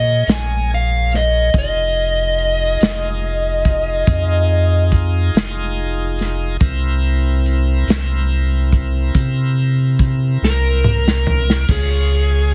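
Soulful and smoky, this slow 12/8 blues excerpt sets a dark, smooth overdriven electric lead guitar over a bright, shouting tonewheel organ, whose sustained chords carry key click, light overdrive and a slow rotary speaker. A deep, clean sine sub bass sits up front with the lead, while an airy, polished acoustic drum kit with a tight kick and medium-tuned snare enters at 0.3 seconds and plays a fill from 10.4 seconds. The whole mix is heavily compressed into a radio-like sound, and the chords move through Bbm7, Fm7 and C7 before landing on Db.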